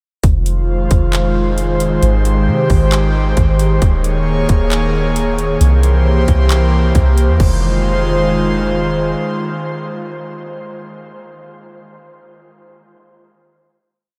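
A sparse half-time trap beat of hard-clipped kick, metallic hi-hats, handclaps and crash opens this short, hazy cloud-rap piece alongside a deep, round 808-style sub-bass whose long, sliding notes follow the kick, while an up-front, breathy pad of detuned sawtooth and noise, thickened with chorus and pumping against the sidechain, drifts in at 0.4 seconds with slow-blooming sustained chords under light reverb, carrying on alone after the drums stop at 7.5 seconds and the bass at 9.2 seconds to let an ethereal final chord hang until 10.8 seconds.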